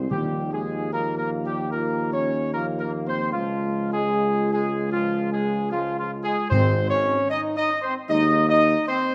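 Opening on dark, smooth-topped French horn chords held in the background over a clear, vintage-toned tuba bass, this regal, majestic classical brass passage in Ab major at 76 BPM brings in a tight, up-front trumpet section carrying the melody, a trombone section sustaining chords with light vibrato, and close timpani struck with medium mallets at 0.1 and 6.5 seconds, as the harmony moves from Ebsus2 through Db to Ab5 in a moderate scoring-stage reverb.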